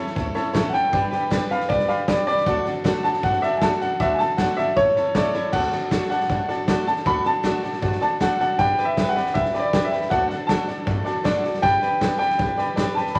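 Vinyl crackle and light reverb frame this rollicking, rowdy rockabilly excerpt in D major, tuned to A4 = 444 Hz and driving at 157 BPM in a straight 4/4. An up-front, woody upright piano with long sustain carries the melody from 0.7 seconds, while a brilliant second upright piano with audible action noise sits in the background, and an upright piano solo stands out over the opening 5.5 seconds. A full-bodied picked dreadnought acoustic guitar, a thumpy pizzicato upright bass on gut strings, and a raw garage drum kit with a punchy kick, medium-tuned snare and rolled-off top in a stone-room ambience fill out the accompaniment as the chords move among A, G and D.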